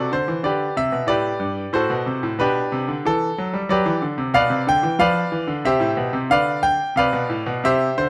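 A bright, polished grand piano plays alone in a flowing, dance-like baroque-style suite movement in triple time with a supple rubato, its brilliant, up-front tone and short sustain captured by close, detailed microphones in light reverb as the harmony moves from G through Am69, Bdim and C to Bdim/D in this brief fragment cut from a longer piece.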